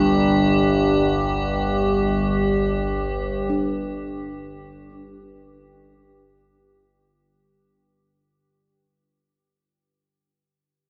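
In free time, this vast, ominous dark ambient drone excerpt is cut from a longer piece, and it centers on a Gsus4 chord, with an overtone-sweeping drone of moving, wave-folded, resonant overtones holding low between G1 and G2 under chorus and phaser, and an eerie, inharmonic metallic drone sustained on G4 with ring modulation, both up front, while bronze, round gamelan-type bossed gongs play beating, close-miked arpeggios from C2 to D4 in the background until 9.2 s, all within a huge ambient reverb of 8.7 s as the music fades out from the start through 7.3 s and the drones end by 7.4 s.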